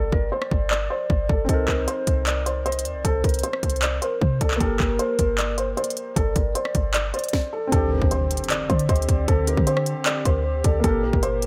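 Following a short opening break, a half-time trap groove at 154 BPM drives this melancholic, hard-hitting hip hop excerpt in G minor, with an up-front drum kit of hard-clipped kick, sharp snare, crisp hats, handclaps and rim clicks over a deep, boomy sine 808 bass, while a thick-felt muted upright piano carries the intimate melody through digital delay, a hollow, woody clarinet-like synth lead sits in the background with chorus, tremolo and vibrato, and a dark vintage grand piano with audible action noise plays the accompaniment, before a soft, flute-like pad with chorus and a background electronic impact arrive at 7.7 seconds as the chords shift to D7sus4, all set in a digital ambience.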